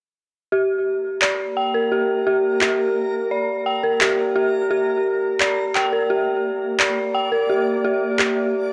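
Tense and spacious, this short cut from a longer half-time drum and bass piece moves at 172 BPM in 4/4, resting on a G minor chord in a tuning slightly below standard pitch. A dark, detuned synth bell enters at 0.5 seconds with eerie, inharmonic FM arpeggios between G4 and G5, its fast attack and decaying tone sitting up front, thickened by chorus, shaded by a low-pass filter and trailed by tape echo. From 1.0 seconds a reversed, swelling texture drifts in beneath it, a dreamy, granular triangle-wave pad between Bb3 and D5 with a slow attack, long release and its own built-in reverb, sitting well back in the mix. Electronic handclaps arrive at 1.2 seconds, up front and tape-warm, re-recorded in a large room, and they drop out at 8.3 seconds before the bell and texture close at 8.7 seconds. The whole is set in a moderate, lush hall reverb, yet the recording itself keeps a dry, gritty hardware character.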